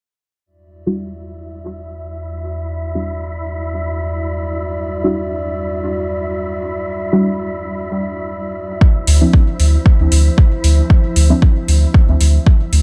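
Hazy and meditative, this dub techno passage, cut from a longer piece, opens on a dark, nasal analog pad holding Em9, soon joined by a deep, warbling chord stab with chorus, phaser and dub echo under a filter sweep, and then a breathy, wind-like tuned noise layer, all three pumped by sidechain. At 8.8 seconds the harmony moves to Dm9 and an overdriven, up-front electronic kick arrives, joined at 9.1 seconds by a round, soft sub bass on D2 with tube saturation and metallic, overdriven hi-hats. The kick and hats carry the character of a large room, set against an otherwise dry mix with a gentle 16th-note swing.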